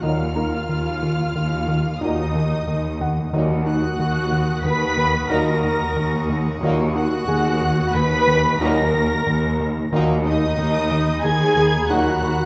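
A veiled, muted orchestral sound fills a moderate scoring-stage reverb in this eerie, tense suspense cue, cut from a longer cinematic score and set at 91 BPM in 5/4 in E-flat minor, resting on a single E-flat minor chord throughout. Two muted symphonic violin sections carry the melody high above and a second line an octave beneath, con sordino with vibrato and a lush, dark sheen, while a muted viola section adds soft-attacked accompaniment below them. At the bottom, a muted studio cello section and a very quiet symphonic double bass section hold E-flat together, joined by a swarming, detuned drone with its own built-in reverb and a granular, evolving grain in the background. A rubbery, hollow square bass with a resonant filter pluck drives a bouncy riff that stands out as the most present voice, set against warm sustained chords from a French horn section and a tight trombone section, both sitting in the background. 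A thick-felt upright piano enters at 0.4 seconds with mellow, intimate texture, and a close, muted studio violin section slips in at 3.3 seconds as another background layer.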